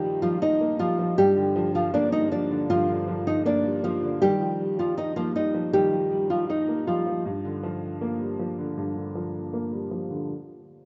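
The rhythm sits in a half-time feel at 158 BPM in 4/4, giving this hard-hitting, dark hip hop excerpt in G minor a slow, heavy sway. Up front, a fingerpicked classical nylon-string guitar carries the melody with an acoustic, shadowy tone, audible finger squeak, a low-pass filter and tape echo. Beneath it, a mellow, worn, boxy grand piano, also up front and low-pass filtered, supplies the accompaniment across the whole clip, moving between Ebadd9 and Gm7. A filter sweep begins at 4.2 seconds, and the guitar drops out at 7.2 seconds, leaving the piano alone until the close. A moderate plate reverb surrounds the parts, and the rough home-demo mix keeps the top end dull and muffled.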